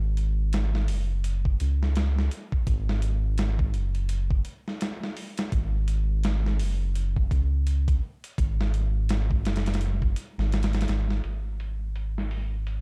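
A round, deep analog bass, sustained and evolving, sits up front from the start of this hypnotic, brooding trip hop excerpt at 84 BPM in 4/4, with a swung sixteenth-note feel. A gritty, compressed sampler-style soul drum kit joins at 0.2 seconds, its thumpy kick, medium-tuned snare and hi-hat muffled by low-pass filtering and carrying the air of a large room. The dark production keeps reverb to a minimum, and the piece moves into a new section at 11.2 seconds before the cut at 12.8 seconds.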